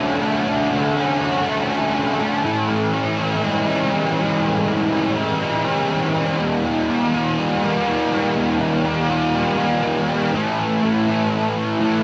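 Rock with a hazy, wistful mood at a moderate straight pace, carried entirely by a solo fuzz guitar that sits up front, bright and picked, double-tracked and compressed, with distortion and analog chorus. Over twelve seconds it moves through Dmaj7, Amaj7 and Eadd9 before landing on an A5 at 10.3 seconds, where a short new section begins. Light reverb and digital ambience frame the guitar within a dark production, and the recording is cut from a longer piece.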